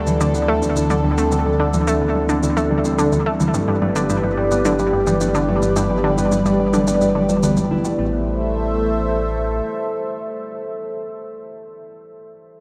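A swirling, detuned analog pad with phaser and chorus sits up front, holding sustained chords that move from D5 to G and settle on A minor at 8.0 seconds in this cosmic, expansive ambient space-music cut from a longer piece, at 108 BPM in a straight 4/4. Beneath it, a nasal, wave-folded analog pluck with chorus and analog delay plays a fast-attack riff until 8.2 seconds, while a deep, round sine sub bass with tube saturation holds the low end. A mellow, thumb-plucked concert harp rings out arpeggios through analog delay in the background, and overdriven electronic toms and shaker re-recorded in a large room play until 8.0 seconds, all set in a huge, wet reverb.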